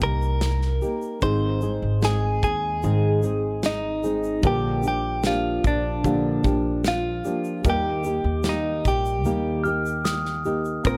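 Acoustic pop in a wistful, reflective mood at 75 BPM, this dry excerpt moving through Cm7, Ab, Bb6 and Eb sets a clean, compressed, up-front electric guitar melody with a phaser over a dark, full-bodied, thumb-plucked nylon-string guitar, a very quiet felt-muted upright piano with soft, mellow tone and audible action noise, a woody pizzicato upright bass and a studio drum kit with a punchy kick, medium-tuned snare and shaker in a pumping room, while a bell-like, vintage-sounding glockenspiel played with rubber mallets adds a brief high line from 9.6 s.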